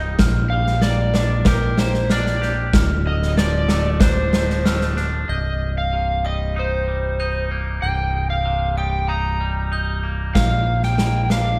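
A sparkling glockenspiel struck with brass mallets rings in the background while a clean, twangy electric guitar picks arpeggios over a growling, overdriven fingered bass that sits up front, opening this brooding, cathartic post-rock passage. A big, natural rock drum kit with a tight kick and medium-tuned snare enters at 0.2 seconds, and an overdriven slide guitar played with fingerpicks carries the melody from 0.5 seconds. The drums fall away at 5.0 seconds and return at 10.4, all within the moderate reverb of a church or concert hall.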